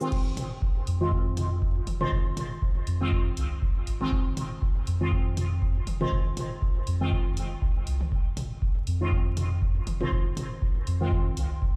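Dub techno with a hypnotic, hazy mood, cut from a longer piece in 4/4 with a swung sixteenth feel, where a juicy, detuned polysynth plays dark, resonant stabs through filter sweeps, chorus, phaser, 12-bit sampler grit, sidechain pumping and dub echo. A round, soft sub bass with tube saturation and pumping sits under an up-front, tape-warm electronic kick, while a layered deep house kit adds crash, hi-hat and shaker and background electronic toms carry dub echo. The whole is heard as if played on a big sound system in a bare room, with large studio reverb and vinyl crackle.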